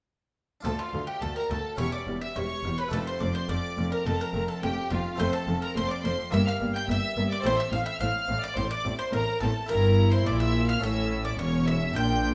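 A straight, driving 4/4 pulse carries this stormy baroque-style concerto movement, cut from a longer piece, as the upper parts enter together at 0.6 seconds, with the cellos and double basses following at 0.7 seconds. A bright, picked bowl-back mandolin shares the melody with an intense, clear violin section soaring above it, while a second violin section adds a focused, smooth-topped line. In the background sit a plucked Italian-style harpsichord and a soft-attacked viola section, all over a bass of expressive cellos with portamento and an even, rich double bass section, bathed in the wet reverb of a stone room.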